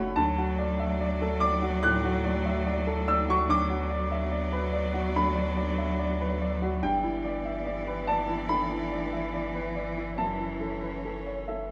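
Hopeful and tender, this neoclassical piano-and-strings excerpt in D major unfolds at a rubato 72 BPM: an up-front, woody, boxy upright piano carries the accompaniment across the full 11.7 seconds, a single bowed cello sings a focused second line with vibrato and a smooth top, a rich chamber string section holds sustained bowed chords, and a deep, clean sine sub bass anchors the low end, while the ensemble sits in a moderate scoring-stage reverb as the harmony moves from D through Bm/D and G6 to F#m7.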